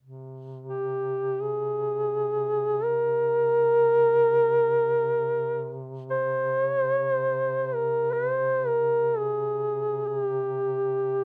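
Longing and mournful, this short excerpt of a Caucasian folk lament unfolds in free time, tuned to A4 = 442 Hz. A dark duduk holds a low drone on C3 from the start, its punchy, smooth-topped tone carrying vibrato and scooped notes, while a mellow duduk enters at 0.7 seconds, up front, with a soft-attacked melody between G4 and C5, shaded with vibrato and scooped notes in a folk style. Light reverb surrounds the pair in a rough home demo mix.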